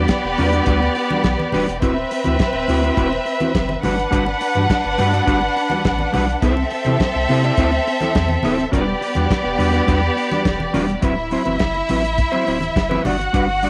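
A straight 4/4 disco groove at 104 BPM drives this glamorous, joyful passage cut from a longer piece: a dry, dark soul drum kit with tight kick, hi-hat and medium-tuned snare, low-tuned congas sitting in the background from 0.4 seconds, a deep, round sine sub bass and a clean, fingered electric guitar support a lush, up-front bowed violin section with rich vibrato, over changes of Em9, D13, Gmaj7 and C6 in a small room touched by moderate spring reverb.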